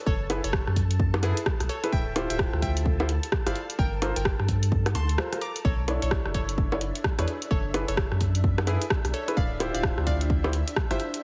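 A swung two-step garage groove of punchy, tape-warm electronic kick and an up-front house kit of bongos, hi-hat and rim click drives this late-night, soulful UK garage cut, with a deep, thick sub bass pumping beneath a hollow, bouncy, detuned square pluck melody trailing dub echo, concert grand piano stabs with tape echo, and silky vintage string-machine chords breathing in the background through minor eleventh harmony, all under a heavily compressed radio sheen with a brief break at 5.2 seconds.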